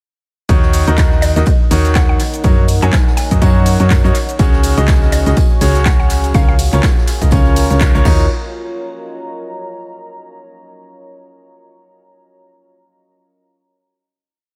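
Bittersweet, energetic piano house in Eb minor at 123 BPM with a swung 4/4 feel, built on a clear, intimate baby grand riff roughened by 12-bit sampler grit, analog delay and sidechain pumping, over a round, punchy FM bass, an up-front four-on-the-floor electronic kick, a tape-toned house kit of claps, hats, shaker, ride and crash, a very quiet breakbeat from an acoustic jazz kit and a faint tambourine entering at 4.4 seconds, while a woody, warbling mallet-like pluck and a deep, moody detuned pad sit in the background, the pad entering at 1.6 seconds and holding a final Ebm7 chord to 10.2 seconds in an echo-heavy small-room mix.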